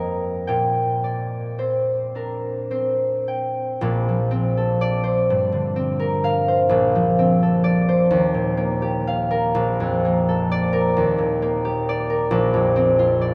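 This is a classical solo harp piece in B-flat major, a short excerpt cut from a longer work, and its mood is peaceful and dreamy. It moves at a slow, rubato pace of 35-46 BPM counted in dotted quarters, in 6/8 time. The concert harp plays alone for the full 13.3 seconds, fingerpicked and up front, its warm, ringing tone spanning from Bb1 up to G5. A wet cathedral reverb places it in a vast, echoing space, with a long decay of 5.2 seconds. After a brief opening section, a new section begins at 3.8 seconds, moving through rich chords such as Bbmaj9, Gm11 and Ebadd9 before settling on Bbadd9 at 12.3 seconds.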